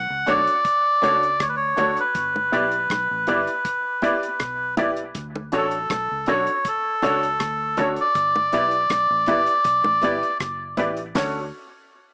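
This rough home-demo mix has a small-speaker sound and a moderate studio ambience, a short cut from a longer roots reggae piece in D major at 80 BPM in a straight 4/4. The mood is sunny and warm as a reedy, breathy melodica carries the tune from the opening, close-miked, nasal and up front, with dub echo trailing its phrases until 10.4 seconds. A dark, round, foam-muted fingered electric bass sits low and quiet underneath, while from 0.3 seconds an electric guitar through an envelope filter plays clean, picked, compressed accompaniment, also treated with dub echo. A clear, intimate grand piano adds stabs up front, its action noise audible, over a damped 70s drum kit with a fat snare, tight kick, hi-hat and rim click. Low-tuned, close bongos play along in the background as the harmony moves between Dmaj7 and G6.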